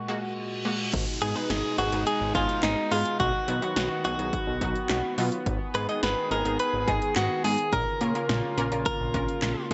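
Melancholic and driving, this 106 BPM synth-pop excerpt in G# dorian opens with an up-front, clean, direct-recorded electric guitar melody with delay over a shimmering chorused pulse-width pad, a bright detuned unison pluck with lush chorus and a reverse cymbal and downlifter in the background, before a thick analog bass with a filter sweep and a punchy house drum kit with gated reverb join at 0.9 seconds, the whole piece set in a light digital ambience.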